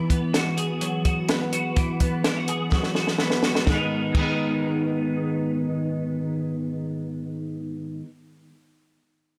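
Jangly indie pop in G# minor at 126 BPM, this bittersweet, wistful fragment of a longer piece rides on a bright, twangy twelve-string electric guitar picking clean, compressed arpeggios through ensemble chorus and digital delay, moving from Eadd9 to G#madd9 at 3.7 seconds. A compact cocktail drum kit sits up front with a dark, smooth, rolled-off sound, a high-tuned snare and a punchy kick, playing a fill from 2.7 seconds before dropping out at 4.3 seconds and leaving the guitar alone. Light reverb gives the pair an intimate small-room feel.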